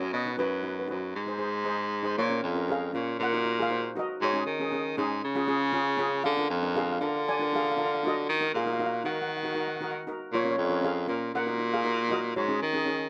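A festive, bouncy calypso at 118 BPM opens with two steel pans and a baritone saxophone together: a mellow lead pan, struck with soft rubber sticks and heard in a boxy small room, carries the melody, while a bright, airy accompaniment pan played with hard rubber sticks fills in beneath. The up-front baritone saxophone takes the bass line with a clear, vintage tone, vibrato and scooped notes, moving through changes such as Bbm7, Ebm/Bb and Ab7sus4. Light reverb and close, detailed microphones keep this short cut from a longer piece crisp, with the shimmering pans ending at 12.8 and 13.0 seconds just before the saxophone at 13.1 seconds.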